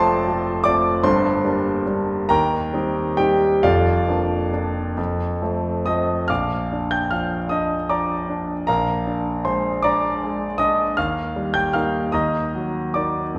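A concert grand piano carries this short romantic character piece alone, its sound intimate and up front, with deep bass, long sustain and audible action noise from the instrument itself. The mood is passionate and warm, and the playing moves in a flexible rubato over a 6/8 metre. The music is cut from a longer piece, and its opening phrase moves from F7 through Gm and Cm7/Eb to Bb/F before resting on F. At 6.3 s a new section settles onto Bb, turns to Bb7 and reaches Eb, then darkens to Ebm just before the cut at 13.4 s. The polished, present piano sits in a reverberant hall or church, and the generous ambience lets each chord ring into the room.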